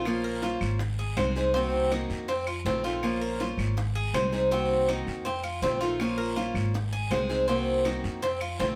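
A straight 4/4 pulse at 162 BPM drives this nostalgic, danceable Cuban son and guajira in Bb minor, where a metallic, double-strung tres plays arpeggios up front beside a boxy parlour steel-string guitar picking bright accompaniment and a growly, thumpy pizzicato upright bass, while round, low-tuned bongos and woody claves sit in the background and a raspy, close guiro adds texture, as the band cycles through Bbmadd9, Ab, Cm7b5 and F7 in a moderately reverberant room across this 8.8-second cut from a longer piece.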